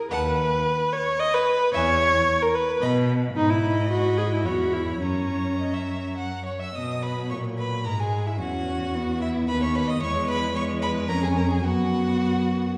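Heard from further back on a wet scoring stage, this lively, spirited classical-period string quartet movement in 3/4 moves with rubato: an intense first violin sings the high melody with vibrato over a focused second violin line, while a smooth, up-front viola carries the accompaniment and a clear, even cello anchors the bass, with the harmony turning through B, G#m and F# before a second section begins at 6.8 seconds.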